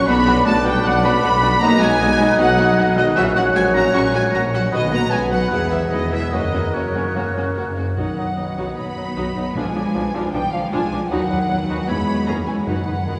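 Classical orchestral music in a dramatic, fast romantic vein, this 13.2-second cut from a longer movement races along at 154 BPM in 4/4 in B major, with a stormy, urgent mood. Lush, bowed symphonic violins carry the melody with smooth vibrato, while a second violin section sits in the background and a very quiet viola section fills the middle with accompaniment. A distant, hollow silver flute and a roomy solo oboe add second lines, a solo bassoon supports underneath, and a dark, tight French horn section holds sustained chords. Mellow trumpet stabs with a soft attack sound until 7.7 seconds. The bass is built from a focused, close cello section, double basses and a solo tuba. Very quiet, dry timpani on medium mallets join at 8.0 seconds as the harmony darkens through a diminished chord, all set in a cathedral-like reverb with a long 4.5-second tail.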